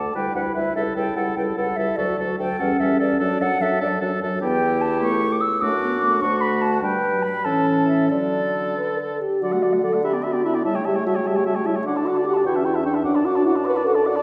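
Heard from further back in a recital hall, this quintet sits inside a long, wet reverb that gives the short cut a soft, spacious glow. It is a quick, cheerful and spirited classical-period movement in 6/8, played with a spirited rubato. The airy concert flute carries the melody with a straight tone and a gentle attack, sounding slightly distant. A warm, lightly vibrant oboe sings a smooth second line beneath it. The clear clarinet and the mellow, close-sounding French horn fill in the accompaniment, the horn standing a little forward in the blend, while a roomy bassoon with light vibrato anchors the bass. The opening phrase runs to about 9.4 seconds and then begins again, moving through bright dominant-to-tonic cadences before the excerpt ends at 14.2 seconds.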